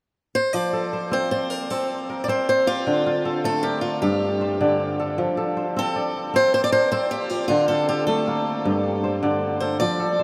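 Hypnotic and joyful, this short cut from a longer West African traditional piece moves at 104 BPM in a straight 12/8, in F major tuned to A4 = 444 Hz. A bright, boxy picked swing-style acoustic guitar carries the melody up front from 0.3 seconds, and a ringing, crisp kora joins at 0.5 seconds with fingerpicked arpeggios over chords cycling through F, Dm and Gm. A huge, wet reverb places both in a vast, echoing space.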